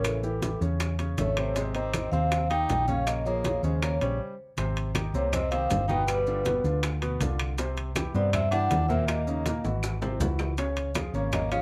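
Lively and danceable, this short cut of Afro-Cuban jazz moves in a straight four-beat feel and is taken from a longer piece. Soft-mallet vibraphone carries the melody with a mellow, ringing tone, medium motor vibrato and plate reverb, while a breathy tenor saxophone plays a second line in subtone with scooped notes and jazz-style vibrato. A warm concert grand with deep bass supplies the accompaniment, and a dark, round hollow-body electric bass, fingered and amped, sits up front. The percussion is subdued: tight, high-tuned bongos, woody claves and grainy maracas stay in the background, ringing metal-shell timbales sound close and dry, and bright, low-tuned congas, compressed and saturated, enter at 0.1 seconds, very quiet. The band stops briefly from 4.2 to 4.6 seconds before the second section, and a drum fill at 9.6 seconds leads into the final chord, all under a light reverb.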